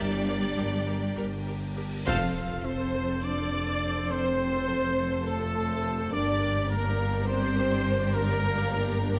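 A wet recital-hall reverb wraps this short cut from a longer epic orchestral film cue, its top end rolled off for a soft, rounded sound, and the mood is heroic and adventurous at 208 BPM in eighths, moving in a straight 7/8 in F major. Two lush violin sections carry the melody and a second line in the background, one smooth and even, the other soft-attacked and expressive, while a clear viola section accompanies and a broader string section holds sustained chords. A dark, tight French horn section sustains chords beneath them, and a rich cello section joins a double bass section placed up front to anchor the bass. A pure, distant flute section adds a very quiet second line only at the opening, ending at 1.2 s. A huge, dark cymbal swell rises from 1.4 s into a band accent and impact at 2.1 s, where the harmony moves from G minor to F and a present, lightly vibrato solo trumpet begins punching out stabs that continue as the chords return to G minor.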